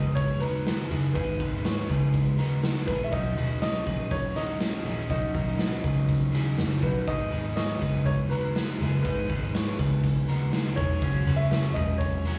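A raw garage drum kit enters at 0.2 s with a punchy kick, a medium-tuned snare and hi-hat in a straight 4/4, its saturated, gritty sound sitting up front in a pumping stone room, while a dark, foam-muted picked bass rounds out the low end in this bright, youthful jangly indie pop excerpt. A woody upright piano carries the melody with slapback echo and digital delay, supported by a compressed, overdriven electric guitar and a twangy, slightly broken-up guitar through a small old amp picking arpeggios, both guitars also touched with slapback echo. The whole thing sounds like a live gig heard through the venue's PA, with club reverb, as the chords move from Badd9 to G#m at 7.1 s and F#sus2 at 11.0 s.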